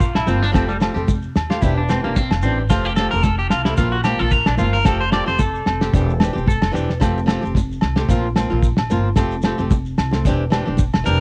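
Lightly reverberant and softened by home cassette tape, this joyful, danceable highlife guitar band excerpt swings along at 111 BPM in F major, with a dry, dark, cloth-damped drum kit thudding up front beside a woody, thumpy pizzicato upright bass, a bright, boxy fingerpicked flamenco guitar giving accompaniment, and a twangy, slightly broken-up electric guitar with spring reverb and analog delay playing arpeggios until 6.8 s, just as a short drum fill lands at 6.6 s, while grainy shekere and ringing agogo bells sit in the background and very quiet, soft-handed high-tuned congas play close by.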